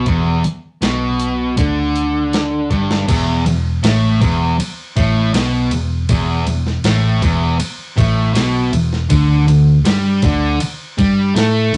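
This rough rehearsal-room recording carries warm saturation with a dulled top end and a moderate studio reverb, giving this short cut from a longer piece a heavy, gritty mood. It sits at a slow 80 BPM in straight 4/4 in E minor, blending blues rock power trio drive with southern rock weight. An overdriven, double-tracked electric guitar sits up front with a dark, picked riff in its low register, moving from Em to an E5 power chord at 3.1 seconds and on to D5 at 9.1 seconds. Beneath it, a vintage foam-muted electric bass gives round, punchy, amped low end. The sampler-style drum kit sounds compressed and pitched down, pairing a thumpy kick with a high-tuned snare, hi-hat, ride and crash, and a drum fill from 2.7 seconds leads into the second section.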